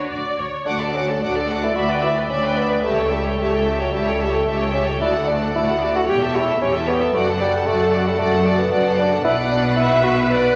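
A quick, graceful classical-period movement for symphony orchestra in D major at 112 BPM, this lively excerpt from a longer piece moves with a rubato feel. Two violin sections carry the melody and a second line, sounding smooth and somewhat distant, while violas add expressive accompaniment with portamento, and close, focused cellos join double basses on the bass line. A mellow solo bassoon with light vibrato enters at 0.7 seconds to add its own accompaniment, all set in the wet bloom of a scoring stage reverb.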